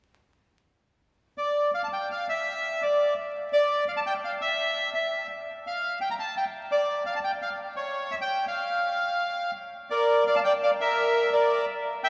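Rubato and loosely felt in 3/4 at 169 BPM, this dramatic, sultry tango fragment in D harmonic minor features a solo bandoneon from 1.4 to 12.1 s. Its reedy, boxy, up-front voice moves between Bb4 and Bb5 and settles briefly on a D minor chord at 9.7 s. A vast, echoing cathedral reverb and a layer of vinyl crackle surround the passage, which is cut from a longer piece.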